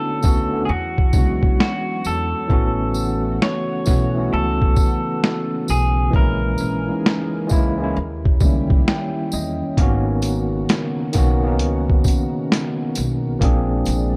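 Light reverb and a digital ambience give this cut from a longer lo-fi hip hop piece a cosy, mellow glow, with a lazy swing in its sixteenths. Up front, a gritty, tape-soaked boom bap sampler-style kit, pitched down and compressed, thumps out kick, medium-tuned snare and hi-hat with a small-room tinge, while a close, dry, jingly tambourine sits quietly beneath it. A woody, dark pizzicato upright bass anchors the low end. A clean tine electric piano, also up front, carries the accompaniment through chords such as Bm9, E13 and A6, and a lush, thick, warbling unison pad with slow attack and long release hovers in the background, softened by chorus. A slightly broken-up, picked electric guitar through a small old amp sings the melody with a compressed, warm, lo-fi edge until 9.3 seconds. The electric piano plays a fill from 8.4 seconds, closing the opening break at 9.8 seconds as the harmony moves to G#m11.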